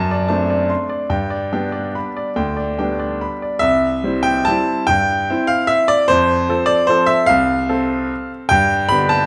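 Swaying in a lilting three-beat waltz metre with a flexible, rubato feel, this short classical excerpt is cut from a longer piece and carries a sparkling, elegant mood. A solo grand piano carries everything, its tone clear and natural and placed up front, ranging from C2 up to C6. The harmony opens on D7/F# and settles onto G by 1.1 seconds before a new passage begins at 3.6 seconds on C. From there it moves through F and returns to G at 8.5 seconds, giving the phrase a graceful sense of arrival. A moderate recital hall reverb, with a decay of 1.4 seconds, surrounds the instrument with a sense of space.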